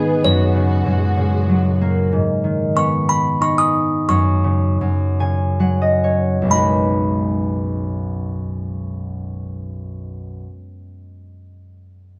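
In a lilting three-beat metre with a free, rubato pulse, this gentle, innocent lullaby drifts along, and it is cut from a longer piece. A delicate, tinkling music box carries the melody with a dark, smooth tone, while a bright, ringing concert harp sits up front, its thumb-plucked playing supplying the accompaniment. At the opening, a veiled, muted string section plays sustained, bowed chords with vibrato from a distance as the harmony moves through suspended and added-ninth colours, before the strings fall away at 2.1 seconds and a minor chord arrives. From there the music gradually slows, and the harp adds a fill from 4.8 seconds. The players share one room, with moderate reverb giving the sound a soft, intimate space.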